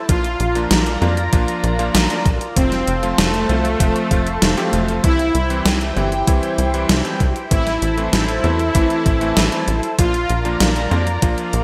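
A tight, punchy sequencer bass drives this cinematic, nostalgic synthwave excerpt at 97 BPM in straight 4/4, alongside an overdriven, thumpy electronic kick and a gated 80s digital drum machine whose hi-hat and gated-reverb snare sit up front. A swirling, detuned phased analog pad, treated with phaser, chorus and sidechain pumping, sustains chords over a Bb, F, C, Am progression, while a soft supersaw carries a smooth melody through digital delay until 10.4 s and a clear, clangy electric grand piano adds delayed stabs, all within a lush hall reverb and bright 1980s-style digital production.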